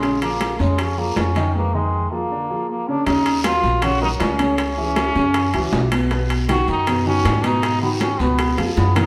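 A straight 4/4 Afro-Cuban jazz groove is set by ringing metal-shell timbales, raspy guiro, background congas and tight, very quiet high-tuned bongos, while a woody, thumpy pizzicato upright bass sits up front beside a warm grand piano's accompaniment. Over them a metal-muted trombone carries the sultry, sophisticated melody with a buzzy, breathy, whispered tone and light vibrato, intimate and present. A break arrives at 1.5 seconds and a drum fill closes this short cut at 8.4 seconds, all wrapped in a wet stone-room reverb that captures the band playing live together.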